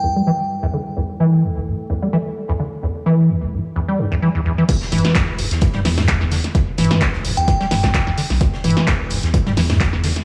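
This gritty, trippy acid house excerpt in E minor runs at 129 BPM with swung 16ths. It opens on a brief, crystalline FM bell note with chorus and analog delay, over a moody, detuned analog pad that holds an E minor chord in the background under a filter sweep and sidechain pumping. Up front, a rubbery, resonant square-wave acid bass riff plays throughout, coloured by tube saturation, analog chorus, cassette tape grit and tape echo. At 4.7 seconds the pad stops and the track drops into its drum section. An analog kick re-recorded in a large room joins a dry drum machine carrying crash, handclaps, hi-hat, a punchy snare and toms, while a very quiet brush kit with a fat, rolled-off snare and hi-hat sits beneath them. A thick sine sub bass with tube saturation and sidechain pumping enters just after, and the glassy bell returns briefly at 7.4 seconds, all held in a light studio reverb.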